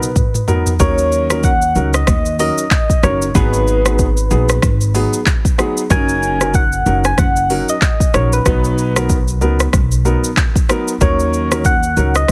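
Hypnotic and smooth, this afrobeats excerpt in Eb minor moves at 94 BPM with a swung sixteenth-note feel, opening on a drum fill from an up-front electronic afro-pop kit with deep kick, metallic hats, handclaps, rim clicks, shaker and toms before a woody, thumpy pizzicato upright bass enters at 0.8 seconds beneath an intimate concert grand piano with audible action noise and a round, gentle FM synth lead colored by chorus, phaser and vibrato, all in a dry, heavily compressed radio sound over chords cycling from Bmaj7 through Ebm7, Abm7 and Gb6.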